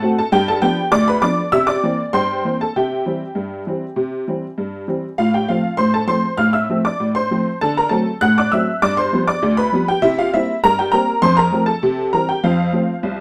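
A detuned, jangly honky-tonk upright piano carries this short ragtime fragment entirely on its own, sitting up front in the mix with a boxy, vintage character and a short sustain. The mood is jaunty and playful, moving at 99 BPM in a straight 2/4 in F major, with the instrument tuned slightly flat of concert pitch. Its range stretches from the deep bass register up to the high treble, covering C2 to F#6. The harmony cycles through dominant chords such as G7, C7 and D7 before resolving to F at 11.2 seconds, then touching C7 and landing back on F at 12.4 seconds. A moderate studio reverb and a dark overall production frame the piano's own bright tone. The clip, about 13 seconds long, is cut from a longer piece.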